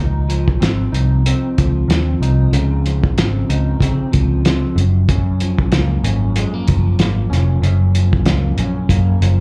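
A live-gig sound heard through the venue's PA, with club reverb, opens this hazy, nostalgic indie and bedroom pop excerpt in Db major, moving at 94 BPM in 4/4 with a light swing on the sixteenths, as the harmony shifts from Dbmaj9 to Gbmaj7 at 4.8 seconds. A dark, round, foam-muted vintage picked bass sits up front from the start, and a cloth-damped acoustic kit enters at 0.3 seconds with a fat snare, tight kick, hi-hat and a rolled-off top. Over them, a twangy, slightly broken-up electric guitar plays fingered accompaniment, compressed and coloured by subtle chorus, vibrato, plate reverb and slapback echo.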